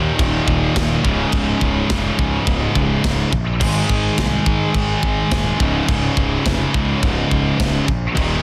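Epic and dark, this short heavy metal excerpt at 105 BPM in 4/4 sets a bright, picked distorted guitar up front beside a high-gain guitar further back, both playing a riff over Eb5, Db5 and Ab5 chords, while a growly fuzz bass sits low in the background and an acoustic drum kit with a tight kick, a medium-tuned snare, crash and china cymbals enters at 0.2 seconds with a rolled-off, mid-forward studio-room sound, the whole mix wrapped in light reverb and a dense, heavily limited master.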